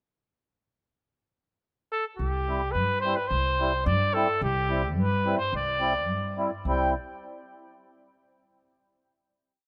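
A clear, vintage-toned trumpet leads this short, festive and jolly alpine folk dance-band piece in C major at 108 BPM in a straight 2/4, entering at 1.9 seconds with a motif-based classical-style melody in tidy period phrases, joined at 2.2 seconds by a woody, up-front pizzicato upright bass playing root and fifth on the main beats and at 2.5 seconds by a reedy, mellow accordion adding off-beat triad chords, all set in light reverb and small-room ambience with a rough home-demo feel before closing on a final chord.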